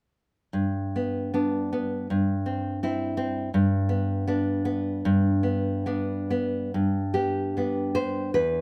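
A close, detailed recording with light reverb places a dark, deep-toned nylon-string guitar up front, with a finger squeak audible in this short, fingerpicked excerpt cut from a longer romantic piece for solo classical guitar. The mood is sunny and nostalgic, the rubato phrasing in 2/4 moving from G to C/G and back to G before a new section begins at 6.7 seconds.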